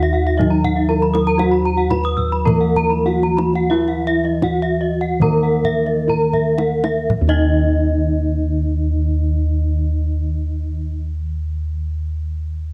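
A straight 4/4 pulse moves between 56 and 120 BPM, slowing from 1.4 to 7.1 seconds in this hypnotic, shimmering stretch of Balinese gamelan in Eb pelog, cut from a longer piece. Round, dark, smooth bossed gongs sit up front on the bass line, under a lead metallophone struck with padded disc mallets that sounds mellow, soft and airy, its paired tuning producing shimmering beats. A lower metallophone adds accompaniment with a bright horn-mallet tone kept in the background. Two more horn-mallet metallophones spin arpeggios high above: one boxy and warm, as if in a small room, the other close-miked, dry and full. Tight, soft-handed kendang plays a drum fill from 6.1 to 7.1 seconds, just before a new section begins, and drops out at 7.6 seconds. Light studio reverb surrounds the ensemble, and the worn cassette-tape sound adds a warbly pitch drift to the whole recording.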